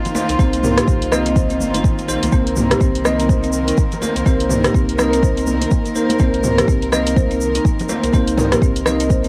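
Warm and spiritual, this afro house excerpt at 124 BPM in C minor pentatonic rests on a Cm7 chord, with sustained sul tasto chamber strings, woody marimba arpeggios with tape echo, and bright bell-like electric piano stabs with lush chorus, each pumping against a deep, up-front electronic kick that enters at 0.4 s, while an overdriven deep house kit of hi-hat, rim click and toms, ringing congas, a distant djembe with metal rattles, a grainy tube shaker and a round, pumping sine sub bass fill out the light-reverb cassette sound.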